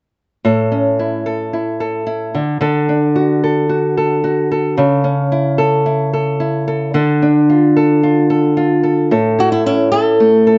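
Pop in A major at 111 BPM, this short excerpt cut from a longer piece has a carefree, sunny mood and a straight 4/4 feel, with the tuning set slightly high at A4 = 445 Hz. A fingerpicked nylon-string guitar carries the accompaniment from 0.4 s, its small, dark tone sitting up front as it moves through A, D, A/C# and a brief turn to D minor before landing back on A. At 9.4 s a flamenco guitar enters with the melody in a narrow upper range, fingerpicked with a warm, flamenco character, audible finger squeak and a touch of plate reverb. The change of section at 9.1 s brings the return to A just before that melody arrives, and both guitars play together until the clip ends at 10.6 s. The room has a moderate studio reverb and the overall sound is soft-edged, with its top end rolled off.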